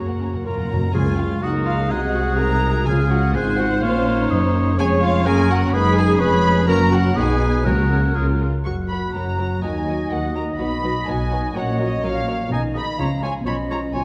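Drenched in a dark scoring-stage reverb, this spirited, lively cut from a quick classical-period symphonic movement in 2/4 at 125 BPM opens with a soft-mallet timpani fill of round calf heads before the bright, punchy oboe, airy flute and mellow French horn section with sustained chords join at 0.9 s, while a veiled con sordino violin section carries the melody above a clear, close-miked clarinet, a second muted violin section, background violas, and muted cellos and double basses anchoring the bass, all moving from Db major into F# major at 4.8 s.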